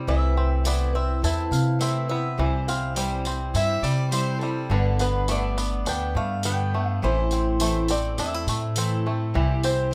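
A rough home-demo sound in a small, moderately reverberant room frames this hopeful, gentle acoustic folk passage, cut from a longer piece, moving at 104 BPM in a straight 4/4 over chords beginning on Amadd9/C and passing through C, Gadd9 and Am. A boxy, picked swing-style acoustic guitar carries the melody over a shimmering, octave-doubled twelve-string acoustic guitar and twangy bluegrass banjo arpeggios played with fingerpicks, all three touched with plate reverb. A woody pizzicato upright bass sits up front, a jingly vintage tambourine enters at 0.7 seconds, and a rich, earthy bowed fiddle with light vibrato adds a brief second line from 3.5 to 4.8 seconds.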